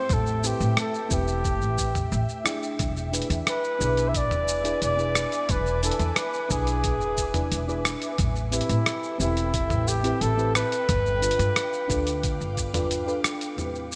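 A mellow, up-front flugelhorn carries the melody with a soft jazz-style attack and a touch of delay over this relaxed sunset chillout excerpt in A minor at 89 BPM, moving through Am7, E7 and G7 before falling silent at 12.9 seconds. Beneath it, a round, dark FM electric piano with chorus and delay comps alongside an ethereal, airy pad of detuned, tremolo-touched sustained chords, while a woody, thumpy pizzicato upright bass anchors the low end. A gritty, compressed sampler-style kit of hi-hat, rim click, shaker and toms pairs with a knocking electronic kick, both tape-warm in a small room, all set in a lush hall reverb with bright 1980s-style digital polish.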